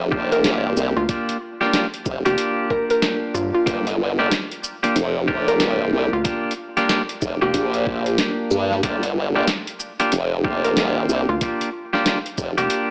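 Funky and swaggering, this glitch hop excerpt, cut from a longer piece, rides a swung 93 BPM groove in 4/4, sitting on a single G minor seventh chord in G minor pentatonic. A wobbling formant-sweep bass leads the low end from the first moment, up front and thickened with chorus and tube saturation, joined at 1.0 seconds by a rubbery, hollow square bass that sounds bouncy and dark. Twangy, bright electric guitar stabs sit prominently in the mix, pumping against the sidechain and trailing dub echo. Above them, a woody wave-folded pluck carries a mellow, percussive melody, coloured by chorus and dub echo. The drums pair a gritty, pitched-down electronic kick with a tape-toned, sampler-style boom bap kit of hi-hat, shaker and snare, both set in studio reverb. The whole mix has a light reverb and the narrow, lo-fi colour of AM radio.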